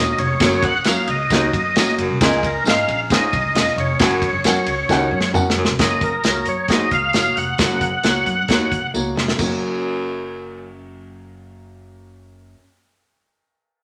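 A straight 4/4 groove at 134 BPM drives this danceable, uptempo 1960s-style soul cut in F# major: a full, lightly overdriven tonewheel organ with chorus vibrato and slow rotary speaker carries the melody until 8.9 s over a dark, boxy upright piano, woody pizzicato upright bass and a punchy, airy country drum kit that adds fills at 4.9 s and 8.9 s, while a bell-like glockenspiel with rubber mallets and a clear, smooth-topped baritone saxophone riff sit in the background, a jingly, very quiet vintage tambourine adds shimmer, and a wet studio reverb surrounds the band.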